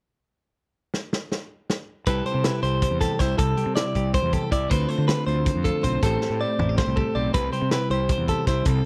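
A loose, gritty indie drum kit opens with a fill at 0.9 s, its saturated sound set up front with a tight kick and a rolled-off top. At 2.1 s a twangy twelve-string electric guitar, a compressed, direct-recorded clean guitar picking arpeggios with slapback echo, and a growly, overdriven fuzz bass come in over a C6, Dm7, Am7, C6 progression in C major, with a second drum fill at 6.2 s. This wistful yet bright math rock and midwest emo fragment moves at a brisk 318 BPM in straight 7/8, cut from a longer piece and captured as a dry, close 1970s-style studio recording.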